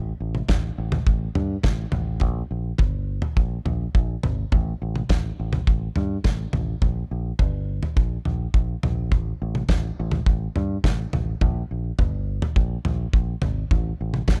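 A dry sound with little reverb frames this short psychedelic rock excerpt, cut from a longer piece, moving at 104 BPM in a straight 4/4. The mood is trippy and dark, carried by just two parts placed up front. A fingered electric bass opens at 0.0 seconds, its round, punchy tone both direct and amped, ranging from G1 to G2. At 0.3 seconds a damped 70s drum kit joins, its acoustic sound polished and airy, with a tight kick, a medium-tuned snare and toms. The two parts carry on together to the end of the passage at 14.4 seconds.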